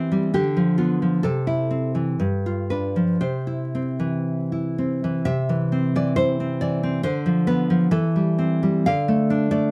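Vinyl crackle sits over a wet, small-room ambience, giving this short passage, cut from a longer piece, an aged and intimate sound. It is a romantic piece for solo classical guitar in C major, melancholic and passionate in mood, moving in 2/4 at a rubato pace of roughly 58 to 70 BPM. The nylon-string guitar is fingerpicked and placed up front, with a woody, full-bodied tone and the warm character of old strings, ranging from G2 up to F5. The opening phrase circles between G7 and C harmonies, and a second phrase begins at 5.3 seconds. That later phrase colours the harmony with a Bdim/D and C/E before settling on a bare D5 at 8.9 seconds.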